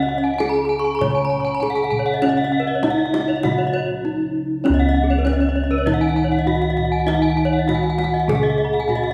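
A straight 4/4 pulse at 99 BPM drives this brilliant, ceremonial Balinese gamelan excerpt in Db slendro, where a bronze metallophone carries the melody with shimmering beats from its paired tuning, a second, close-miked and dry metallophone lays down full accompaniment, two bright horn-mallet metallophones, one of them airy, spin arpeggios above, dark, round bossed gongs hold the bass, and a tight, band-limited kendang sits in the background from 0.3 seconds, all in a reverberant recital hall, with a break at 3.7 seconds that brings a drum fill at 4.0 seconds.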